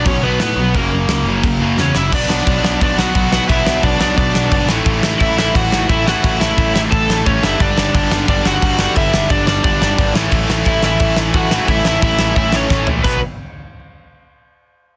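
A crunchy, up-front overdriven guitar carries the melody through this urgent, raw punk rock excerpt in B minor at 176 BPM, over a big, airy acoustic drum kit with a fat snare and bright cymbals and a growling overdriven picked bass, while a background cranked stack guitar, a double-tracked tight distorted guitar and a very quiet hollow-body semi-hollow guitar drive riffs, opening in half time before a drum fill at 1.8 seconds launches a B minor, A, G, A progression, with light reverb and a dense, heavily limited master.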